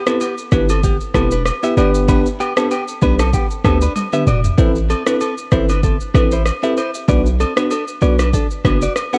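Swung sixteenths at 96 BPM in 4/4 drive this smooth, hypnotic afrobeats passage in A dorian, where an overdriven, up-front drum kit of deep kick, rim click, shaker and toms (with a fill at 4.0 seconds) and distant agogo bells join a punchy, heavy 808-style bass entering at 0.5 seconds, while a bell-like tine electric piano plays through Em, G, Amadd9 and Bm alongside a clean, scooped direct guitar riff carrying tape echo, all colored by light reverb and a worn cassette warble with drifting pitch.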